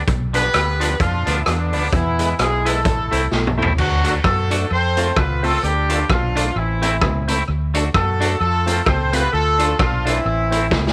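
Ska at 130 BPM with a swung, energetic and mischievous feel, cut from a longer piece, where a clear, roomy horn section carries the melody in octaves over a round, foam-muted bass, a gritty, saturated garage drum kit with tape echo and fills at 3.3 and 10.7 seconds, a bright clean guitar with harmonic tremolo, and a fat percussive organ with key click and slow rotary speaker sitting in the background, moving through a progression from Bdim to Am.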